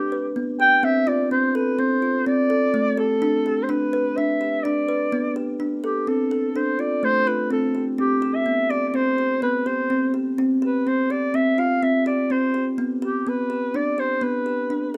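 A mellow, jazz-inflected clarinet solo with soft attacks, scooped notes and vibrato opens this urgent yet pensive excerpt of contemporary chamber music in 5/4 at 126 BPM in D dorian, joined at 0.1 seconds by thumb-plucked kalimba arpeggios whose woody, ringing tone sits up front, all held in light reverb and close, detailed sound as the harmony moves through G, Dm7 and G/D into a new section at 5.6 seconds.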